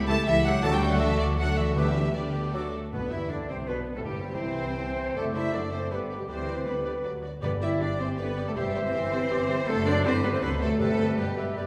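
This quick classical-period symphonic movement in G major runs at 160 BPM in a straight 3/4, and its mood is stormy and dramatic. Lush violin sections carry the melody and a focused second line with vibrato, over violas playing a smooth, very quiet accompaniment. Dark cellos with portamento and up-front, close double basses share the bass. In the background, bright flutes, a clear oboe and a mellow clarinet each add second lines, and a bassoon supplies light-vibrato accompaniment. Horns hold sustained chords, distant trumpets punch out stabs only until 2.7 s, and round timpani struck with soft mallets play from 0.6 to 4.6 s and return at 7.4 s. A brief opening passage gives way at 2.9 s to a new section cycling through G, C/G and D7/F# harmonies, all set in a reverberant recital hall in this extract from a longer piece.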